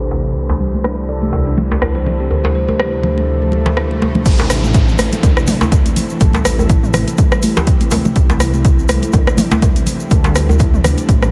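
Afro house at 123 BPM in A minor with a 16th-note swing, this spiritual excerpt opens on an ethereal, chorused pad under a filter sweep, a rumbling detuned saw bass, background djembe and congas, a ringing handpan arpeggio with tape echo, and a woody kalimba melody that appears briefly at 1.1 seconds. A layered deep house kit of hi-hat, rim click, toms and crash comes in at 0.8 seconds. A swell and downlifter lead into the drop at 4.3 seconds, where a punchy, overdriven kick enters up front alongside a grainy egg shaker. The whole mix is dreamy and soaked in cathedral reverb, with the pad, bass and handpan pumping against the kick as the chords move through C, Dm7 and Am.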